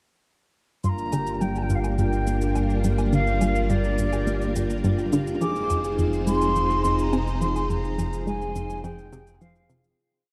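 Dark, plate-reverbed production frames this expansive, mysterious piece of sequencer-driven space music in G phrygian at 105 BPM, where a lush vintage string machine holds up-front chords over Gm7 and Fm7, a fat detuned analog bass sustains its root beneath a filter sweep, a round, nasal analog pluck cycles a 7-step riff through chorus and tape echo that drifts against the bar, a mellow thumb-plucked harp rings out a 3-step arpeggio loop, a distant, airy wooden flute with vibrato sings expressive arch-shaped phrases, and a light tape-warm cabasa and woodblock pulse ticks underneath until the fade-out from 6.9 to 10.0 seconds.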